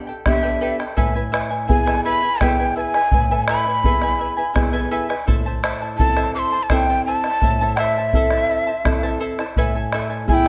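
Close, detailed microphones and light reverb frame this festive yet melancholic Andean folk excerpt in 3/4, where a shimmering fingerpicked charango with double strings and a dark, thumb-plucked nylon-string guitar accompany from the start, a breathy, bright wooden quena carries the tongued, unsteady melody with vibrato up front alongside a deep bombo from 0.3 seconds, and a vintage tenor saxophone with classical-style vibrato slips in on a single second-line note at 10.3 seconds just before the cut.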